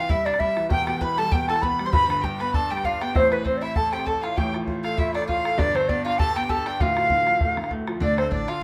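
Set in a small room with a moderate, short reverb, this wild, driving Celtic reel excerpt swings its eighth notes, and a hollow, tongued wooden flute carries the melody up front with vibrato. Beneath it a biting, bowed fiddle and a round, picked mandolin play second lines, a brilliant baby grand piano supplies accompaniment with long sustain, and a damped, tight bodhran drives the rhythm. A woody pizzicato upright bass appears only near the end, at 8.0 seconds.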